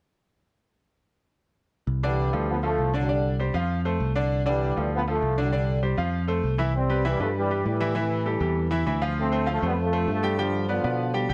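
A sunny, danceable salsa groove in straight 4/4, cut from a longer piece. A picked electric bass opens at 1.9 seconds with a growly, punchy tone that sits up front, and a bright grand piano joins at 2.0 seconds as accompaniment, brilliant and intimate, with its action noise audible. A trombone section carries the melody from 2.1 seconds, playing tight with light vibrato and a roomy, distant pop-style sound. The harmony moves between Csus2 and F before opening into a Cmaj7, Am7, Dm7, G7 progression from 6.7 seconds. Light reverb gives the parts a shared space.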